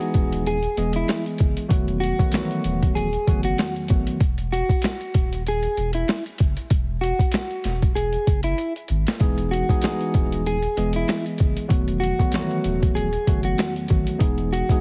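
A soulful, nostalgic boom-bap hip-hop excerpt opens with a dark, clean, fingered electric guitar melody touched by digital delay, a worn, slightly out-of-tune tine electric piano up front, and gritty, pitched-down sampler drums with a thumpy kick and high-tuned snare, joined at once by a deep, full, sine-toned sub bass; the piano drops out at 4.2 seconds and returns at 9.2 after a drum fill at 8.6, and the mix carries a heavily compressed radio sound with vinyl crackle and little reverb.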